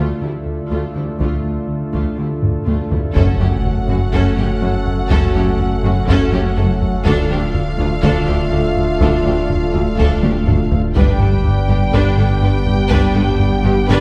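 Vast and brooding, this cinematic hybrid of orchestra and electronics opens with a close, focused viola section, a detuned, warbling analog pad with chorus, a smooth synth bass riff and a very quiet cello section, is joined at 1.2 s by expressive double basses and heavy-stick taiko, and at 3.2 s a huge, dark impact ushers in a lush violin melody over a background violin line, French horn chords and a round sine sub bass, set in a wet scoring-stage reverb heard from further back in the room.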